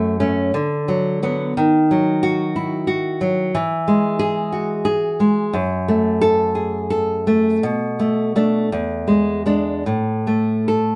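A softly reverberant, up-front recording with a gentle high end frames this tender, romantic excerpt for solo nylon-string guitar, its bright fingerpicked classical voice ranging from E2 to A4 in a rubato 6/8 as the chords pass from F#m through Bm/D, D#m and E before settling on Bm7 and E7, the harmony dropping away at 9.9 seconds as the excerpt runs on to 11 seconds.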